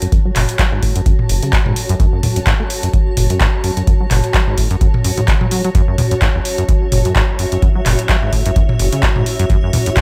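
Playful and raw, this acid house cut from a longer piece rides a swung 4/4 groove. A squelchy, resonant sawtooth acid bass drives the riff from the first second, its fast-attack plucked notes decaying under a filter sweep that runs through the whole 10 seconds, colored by analog chorus, tape echo and sidechain pumping. Up front, a booming analog drum machine supplies handclaps, toms and metallic hats, while a deep electronic kick enters at 0.1 seconds and sits loudest in the mix, both re-recorded in a large room. Above them, a granular cloud pad of detuned unison sines hovers high, blurred and evolving, with slow attack, long release, its own built-in reverb and sidechain pumping of its own. The overall sound is dry and close, holding on a single F#m chord throughout.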